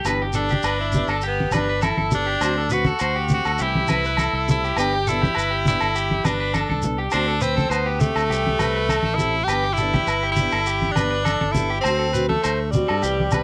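An edgy tenor saxophone with vibrato carries the melody up front from 0.4 seconds in this joyful, danceable highlife excerpt at 102 BPM in G major. Beneath it, a twangy, slightly broken-up electric guitar plays arpeggios through analog delay, a woody, boxy fingerpicked steel-string acoustic guitar with old strings sits in the background, and a fingered electric bass underpins a cycle of G6, D7 and C6 chords. Damped, thick-skinned congas, ringing agogo bells and a grainy shekere keep a straight 4/4 pulse, and the home cassette recording with light reverb gives the saxophone and both guitars a tape-coloured tone.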